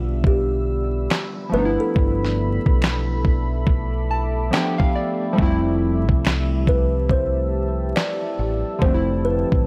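A gritty, thumpy sampler-style drum kit with a fat snare, kick and handclaps drives this nostalgic, melancholic lo-fi hip hop excerpt at a swung 70 BPM, entering at 0.2 s over a round, fingered dub electric bass, detuned analog keys with chorus and cassette tape character, a woody kalimba melody carrying tape echo, a deep, moody ambient pad with chorus and reverb, and very quiet, distant finger snaps from 1.1 s, set in light reverb with vinyl crackle as the chords move from Em7 through G13 and Fmaj9 to Dm9/F.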